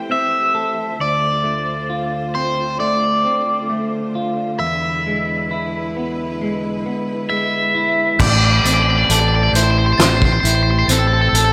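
Bathed in a big arena sound with concert hall reverb, this melancholic, cinematic post-rock passage at 67 BPM sets an up-front, crunchy overdriven lead guitar melody with phaser and slapback echo over clean, picked semi-hollow guitar arpeggios and sustained, bowed chamber strings with vibrato moving through Am7, Dm7 and E7, until at 8.2 s a growling, overdriven fingered bass, a loose indie drum kit with a fat snare and punchy kick, and a faint, bell-like glockenspiel played with brass mallets join in.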